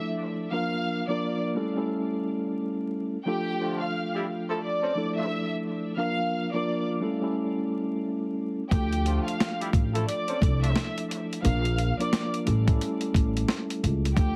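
A lush, bowed violin section with rich vibrato carries the melody over mellow tine electric piano chords in this dark, moody boom-bap hip-hop excerpt, with soft-attack jazz horn stabs in octave doubling joining at 3.6 seconds, and at 8.7 seconds a woody pizzicato upright bass and a gritty, pitched-down sampler drum kit with a thumpy kick and high-tuned snare arriving up front, the whole mix carrying vinyl crackle and a heavily compressed, radio-like sound.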